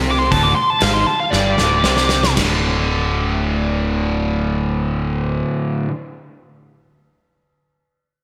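A straight four-beat pulse slows over the first 2.4 seconds of this swaggering, energetic hard rock fragment. During that stretch a biting lead guitar sits up front with a solo in its high register, its tone overdriven yet warm. Behind it a big acoustic drum kit plays crash, hi-hat, a tight kick and a medium-tuned snare with a rolled-off top, and breaks into a fill at 1.3 seconds. Underneath, two low riffing guitars share the same range: a bright cranked stack treated with a lush chorus, and a dark, sludgy distorted partner. A punchy, direct picked bass plays alongside them from the start until 5.4 seconds, and the guitars carry on until 5.9 seconds. The whole mix has a glossy 1980s-style digital sheen, with hall reverb and a touch of small-room ambience.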